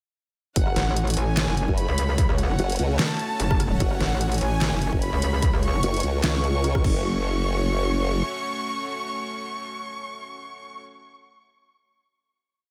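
A heavy wobble dubstep piece in F# minor at 148 BPM opens at 0.6 seconds straight into a chaotic, aggressive half-time drop, with a punchy layered kick and a dubstep kit of deep snare, claps, hi-hats, rim clicks and crash, both re-recorded in a large room, under two up-front wobble basses: a detuned sawtooth one with a formant filter, joined at 0.8 seconds by a metallic FM one that answers it until 5.8 seconds, both chorused, overdriven and shifting their wobble speed across modulated phrases. Above them, a lush, detuned supersaw pad holds sustained chords with sidechain pumping, while a close, expressive studio violin section plays a repeating riff melody with vibrato, portamento and delay. A band accent lands at 6.8 seconds, then the drums drop away and the final hit from 7.0 seconds carries the formant bass until 8.2 seconds and leaves the violins and pad ringing in a digital ambience until 10.8 seconds.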